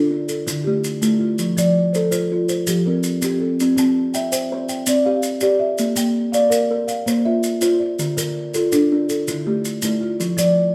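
A lush studio reverb surrounds this short passage, cut from a longer piece, capturing a small group playing together live in one room. It is a hypnotic, rippling southern African traditional piece built on an mbira-style interlocking cycle in 12/8 at 109 BPM, with a straight feel. A plucked kalimba sits up front, its airy, woody fingertip tones and hollow box resonance spinning short, mellow arpeggios. Beneath it, a buzzing marimba struck with soft mallets adds round, dark, smooth arpeggios from its hardwood bars. Grainy, saturated maracas keep a quieter pulse from 0.3 seconds onward. The harmony moves from D minor to F, shifts to C at 3.6 seconds and on to B-flat, then returns to D minor before the music breaks off.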